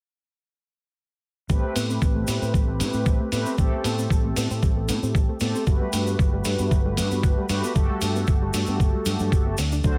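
Sensual and sleek, this nu-disco excerpt swings lightly as a brassy, detuned synth brass with ring modulation, filter sweeps, chorus, tape echo and sidechain pumping carries the chords from Am9 to Gmaj9 at 5.7 seconds, while a gentle pluck arpeggiates in the background, a dark, round fingered electric bass anchors the low end, and a gritty, thumpy electronic kick sits up front beside a compressed electronic hi-hat and a distant cabasa in a large room.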